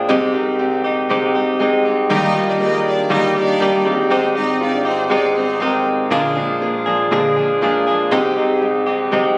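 A warm, open baby grand piano with long sustain and a clean, picked electric guitar riff, recorded direct with subtle chorus, sit up front from the first moment of this dramatic, driving piano-led pop fragment in straight 4/4, while a rich, bowed violin section adds a focused second line with vibrato from 2.1 to 5.8 seconds, the whole cut from a longer piece and captured on a phone in the room with club reverb and compression.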